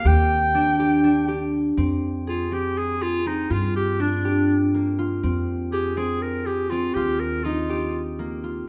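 Contemporary instrumental chamber music in 7/8, urgent and restless, cut from a longer piece. A clear, forceful clarinet carries the solo melody with vibrato and a jazz-style edge, while a fingerpicked concert harp rings out in arpeggios and an upright bass plays woody, thumpy pizzicato lines on gut strings. All three sit up front in a moderate recital hall reverb as the harmony moves from Ebmaj7 through Fm and Gm7 to Ebadd9 at 7.0 seconds.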